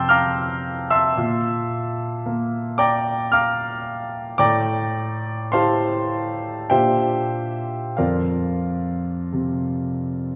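Serene and hazy, this short excerpt of impressionist classical music features a solo concert grand piano moving at a slow, rubato pace between 45 and 56 BPM in 3/4 time. The piano plays alone for the full 10.4 seconds, ranging from F2 up to A6, with a clear, natural tone that sits up front and rests on a deep bass. The harmony drifts from F6 through Bb69 and Am7 to Bb, settling on F5 at 8.0 seconds. A wet concert hall reverb with a 2.0-second decay surrounds the instrument, blended with small room ambience. The fragment is cut from a longer piece.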